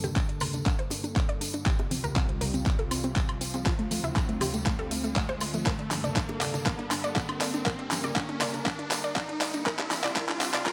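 Bathed in a moderate hall reverb, this emotional, expansive progressive house build-up at 120 BPM in G minor sets a lush, warbling, detuned pad holding sustained chords against a round, bright sawtooth pluck playing delayed arpeggios, both chorused, pumping to the sidechain and shaped by filter sweeps, while a punchy, up-front electronic kick arrives at 0.2 s beneath a pop kit drum fill of handclaps, metallic hats and woodblock, with background bongos and congas, a jingly, close tambourine and a riser entering at 0.6 s.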